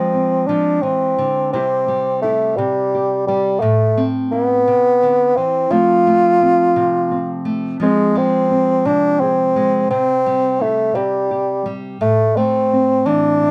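Set in 6/8 with a straight feel, this folk piece moves at an unhurried 57 beats per minute counted in dotted quarters, giving it a pastoral, peaceful mood. A mellow bassoon carries the melody throughout, sitting up front in a classical style with a light vibrato and a solo character, singing from G3 to F4. Beneath it, a nylon-string guitar provides accompaniment from the very start to the end at 13.5 seconds, its dark, small tone and fresh strings coming through as it is plucked with the thumb, also placed up front. The harmony circles through F minor, C, A minor and F before returning to F minor, C and A minor. A light reverb gives the pair a gentle sense of space in this short passage, which is cut from a longer piece.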